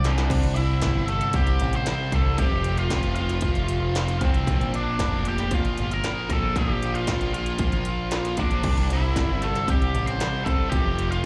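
A short drum fill on an industrial drum kit opens this brief cut from a longer quiet-loud alternative rock piece, angsty and dark, in a straight 4/4 at 115 BPM with tuning at A4 = 444 Hz. The electronic, produced kit sits up front with a heavy kick, clanging snare and crisp hats. Beside it, a growling picked electric bass, overdriven and also up front, holds the low end from F1 to C2. Over them, an octave-fuzz lead guitar carries the melody between C4 and C6, its dark, distorted tone given slapback echo. In the background, a crunchy overdriven guitar and a bright, double-tracked distorted guitar that enters at 0.3 s play riffs with slapback echo, while a very quiet thick fuzz guitar sounds briefly at the start and returns at 8.6 s. The chords move from Cadd9 through F5 and Bb before coming back to Cadd9 and F, all heard as a live gig through the venue's PA with a touch of club reverb.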